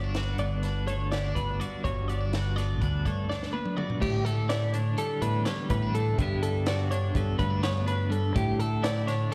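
Fingered electric bass stands out most, growly and up front, holding the low end from G1 to A2 under this intricate, playful stretch of math rock and midwest emo, cut from a longer piece. Two bright, clean twelve-string electric guitars sit above it: one plays accompaniment with tremolo and slapback echo, while the other picks twangy arpeggios between G4 and D5, also touched with slapback echo. A compact cocktail drum kit, dry with dark cymbals, a high-tuned snare and a punchy kick, enters at 0.1 seconds and works through crash, hi-hat and toms, with a fill from 3.3 to 4.0 seconds leading into the second section. The tempo sits at 249 BPM in eighths in a straight 9/8, in G lydian with tuning at A4 = 436 Hz, moving from Gmaj7 to A7sus4 and G6. It sounds like a live gig heard through the venue's PA, with small room ambience and a recital hall reverb around the band.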